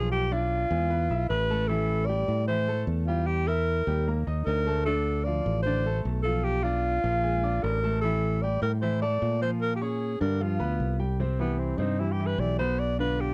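Afro-Cuban jazz at 152 BPM in a straight 4/4, sunny and danceable, tuned slightly flat to A4 = 436 Hz and heard as a short cut from a longer piece. A breathy, whispered alto saxophone with light vibrato and soft subtone attacks carries the melody up front, while a clear baby grand piano with long sustain and audible action noise accompanies and a growly fingered electric bass drives the low end. Around 11.2 s the saxophone moves into a solo, all captured in a dry, close 1970s-style studio sound.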